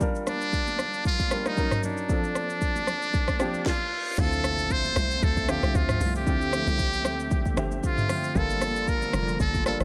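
A muted trumpet leads up front from 0.3 seconds, its buzzy, breathy tone carrying light vibrato, scooped notes and analog delay in a jazz-style solo over a deep, soulful amapiano groove. A worn baby grand piano with long sustain plays the chords alongside an electronic drum kit with a deep kick, sharp snare and 12-bit sampler grit, while distant, high-tuned congas sit very quietly in the background. A reverse cymbal rises from 3.6 seconds into a drop at 4.2 seconds, where a bouncy log drum bass enters, and shortly after, at 4.6 seconds, an airy, flute-like pad with chorus and sidechain pumping fills out the echo-heavy mix.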